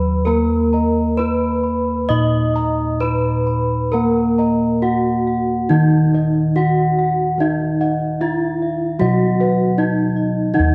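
Shimmering and stately, this Javanese gamelan excerpt in Eb pelog moves at a measured 66-80 BPM in a straight 4/4, with an airy bronze metallophone melody up front, ringing and beating from its paired tuning. Beneath it, a dark, smooth metallophone carries the accompaniment, while a higher metallophone spins boxy arpeggios and a second set of mellow bossed gongs adds soft arpeggios in the background from 0.3 s. Full, dry bossed gongs struck with padded beaters anchor the bass up close, all set within a dark production and a concert-hall reverb.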